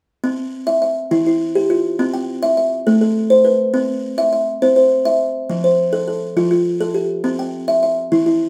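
Southern African traditional music with a rippling, warm mood, taken from a longer piece. A lone buzzing kalimba carries the whole passage from 0.2 to 8.5 seconds, spinning out arpeggios in a straight 12/8 that stretch from its low register up into its upper notes. Each thumb-plucked note is short and woody, with a hollow, boxy body and a rattling buzz that gives the tone its distinctive edge. The harmony circles around C major, passing through E minor, A minor and F before settling back on C. The kalimba sits up front, while a moderate stone-room reverb adds a sense of a live performance in a single space.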